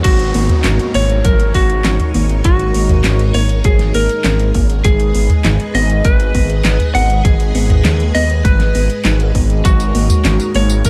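Nocturnal and cinematic, this synthwave excerpt moves at 100 BPM in a straight 4/4, shifting between F#6/G# and G#m chords. A slightly broken-up electric lead guitar carries the melody with delay, joined by a very quiet FM synth bell that traces a pure second line in the same register. Beneath them, a vintage string machine holds lush sustained chords through phaser and ensemble chorus with a sidechain pump, while a soft, round pluck spins dark arpeggios in the background, colored by cassette tape and delay. A thick, detuned saw bass sits up front, anchoring the low end alongside a punchy overdriven electronic kick and a layered pop kit of fat snare, metallic hats, handclaps, tambourine, toms and crash cymbal. A faint downlifter sinks away over the first 4.8 seconds, and the whole mix has a dark, warm digital ambience.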